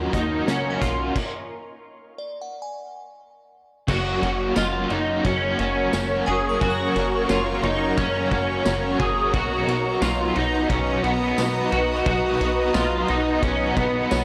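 A dreamy, ethereal dream pop excerpt in F# major at 88 BPM opens with a twangy, slightly broken-up electric guitar picking chorused arpeggios with tape echo up front, an overdriven hollow-body guitar with tremolo and chorus, a blurred granular cloud pad holding sustained chords, and a punchy, plucky analog bass, soon joined by a vintage drum kit with dark cymbals and tambourine and, from 0.5 s, a crystalline FM synth bell in the background, with a stop from 1.2 to 3.9 s before the music settles onto F# and B chords in a dry, gritty small-room recording with transformer saturation.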